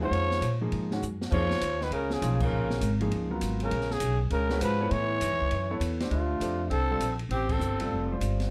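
A growling, raspy trumpet melody with plate reverb, a breathy tenor saxophone second line, intimate grand piano with audible action noise and a woody, up-front pizzicato upright bass open this hypnotic, cool modal jazz excerpt in swung 4/4. An open drum kit with dark cymbals, a high-tuned snare and a boomy kick joins at 0.1 s and plays a fill at 1.0 s, while the band hits accents and the chords move from Bbm7 through A7 to Dm7 at 6.1 s, all set in a moderate club reverb.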